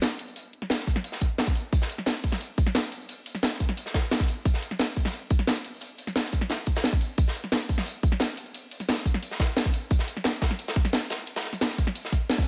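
A tight, up-front electronic kick drum anchors this rolling, dreamy drum and bass fragment, arriving at 0.9 seconds and carrying through to the end. Above it, a layered, produced garage drum kit with a tape-warmed tone plays hi-hat, ride cymbal and a cracking snare from the very start. Beneath that sits a crunchy breakbeat kit of acoustic character, captured in a studio room. Its hi-hat and medium-tuned snare sound saturated and gritty with a rolled-off top, and high-pass filtering thins its hats, snare and room sound. The straight 4/4 groove is set in a studio reverb, and a band accent lands at 12.3 seconds just before the recording breaks off.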